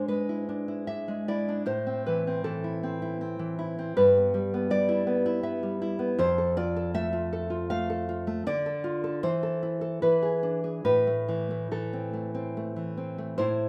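Melancholic and passionate, this is a romantic piece for solo classical guitar in 3/4, played with a rubato feel that lets the time breathe. A single fingerpicked nylon-string guitar carries everything, sitting up front with the warm tone of fresh strings. The harmony moves from E7/G# into Am, then drifts through Em/G, F and Dm before settling back through Am/E and E7 to land on Am at 10.8 seconds. The guitar ranges from F2 up to F5. A moderate recital hall reverb surrounds the instrument, lending the sound an intimate concert-room glow, and the passage is cut from a longer piece.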